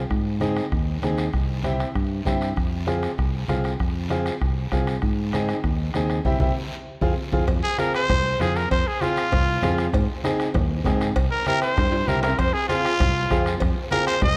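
A fiery, passionate cumbia excerpt in F minor at 196 BPM opens with a round, dark fingered electric bass, a close, dry bombo, low-tuned congas and a raspy guiro, joined by a woody, vintage upright piano that adds a fill at the close of a band accent, and at 7.5 seconds ringing cowbell and timbales arrive as a gritty, growling trumpet takes an up-front solo over Ab, C and Fm chords in a moderate recital hall reverb.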